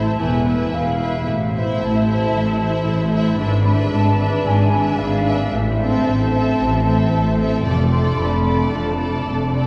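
Pushed along in a rubato 4/4 at 113 BPM, this stormy, restless excerpt from a fast, dramatic romantic orchestral movement in A minor sets a lush, bowed violin section with vibrato singing the melody alongside a pure, mellow flute section and a second violin line, while distant violas fill in the accompaniment, a ringing, fingerpicked concert harp spins arpeggios in the background, and focused cellos join double basses sliding with portamento to anchor the bass, all bathed in a long church reverb as the harmony moves from E through Am and E7/G# to Dm/F.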